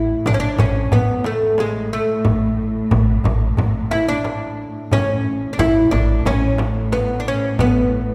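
A spacious, wet reverb, like that of a church or concert hall, surrounds this short cut from a longer Arabic maqam ensemble piece, giving it a stately, warm character in a straight 4/4. Up front, a bright, fretless oud plucked with a plectrum carries the melody between G#3 and E4, its double strings lending a woody edge. Beneath it, a dark pizzicato upright bass with steel strings sits on A1. In the background, a muted cello section, bowed con sordino with light vibrato, holds a veiled drone on A2. The percussion plays from 0.3 to 7.7 seconds: a very quiet darbuka with a deep clay shell and natural skin, and a small frame drum struck with hard hands, close and dry in the background.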